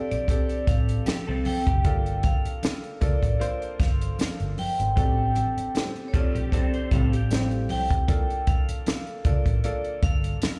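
Heard as a live club set through the venue's PA, this short, silky cut of lush 1970s-style soul in G minor moves at a swung 77 BPM, with a ringing, airy vibraphone melody over clear, worn grand piano, a dark, round, foam-muted electric bass, a dry, up-front cocktail kit with a high-tuned snare and punchy kick, very quiet congas and a jingly tambourine, while a slightly broken-up, lo-fi guitar riff enters at 1.1 seconds and a mellow, tight trombone section adds soft-attack stabs from 5.8 seconds during a cinematic band accent.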